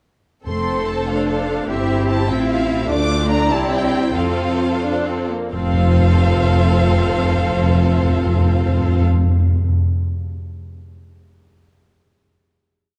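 Spirited and lively, this quick classical-period symphony orchestra movement in F major and 6/8 moves with a rubato feel at 83-100 BPM, as rich, expressive violins carry the melody over a second violin line, lush viola inner parts that answer at phrase ends, a smooth cello counter-melody in the background and a clear double bass doubling the bass line, while calf-headed timpani strike dry single strokes up front, the theme slowing from 2.3 seconds until a final chord arrives at 5.5 seconds with the timpani returning from 4.1 seconds, all set in a wet concert hall reverb with a dark, warm production.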